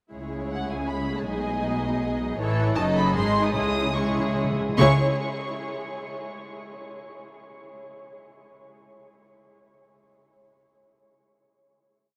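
Drenched in a huge, echoing reverb, this short, urgent and stormy classical-period movement in C# minor races along in quick 3/4 with rubato, as a lush violin melody entering at 0.5 s soars over tremolo chords from a close second violin line and distant violas, a dark cello bass with passing notes, a rich double bass doubling it, and dry calf-head timpani whose fill from 3.5 s accompanies the slowing toward a final C# minor chord at 4.8 s.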